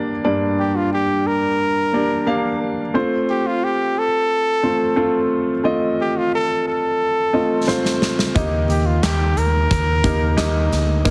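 Driving and bittersweet, this piano-driven pop excerpt at 89 BPM opens on a polished baby grand moving from Gm to F. A clear, close-miked trumpet carries the melody with vibrato and scooped notes from 0.6 seconds. A huge arena drum kit with handclaps and a punchy kick bursts in with a fill at 7.7 seconds, and a dark, overdriven picked electric bass joins on Eb at 8.4 seconds, in a heavily compressed, radio-style mix with light small-room reverb.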